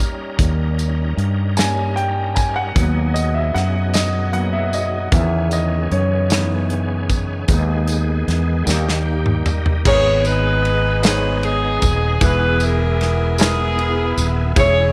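Light reverb and a small room ambience frame this solemn, fervent slow gospel piece in G# minor, moving at 51 BPM in a straight 6/8. A natural, intimate concert grand with audible action noise and deep bass carries a solo over a shouting, lightly overdriven tonewheel organ with fast rotary speaker and chorus vibrato, while a round, dark fretless bass sits up front beside a polished, airy drum kit with punchy kick and a jingly tambourine in the background. Drum and organ fills at 8.7 seconds lead into a tight, jazz-style saxophone section that takes the melody at 9.9 seconds with bright vibrato.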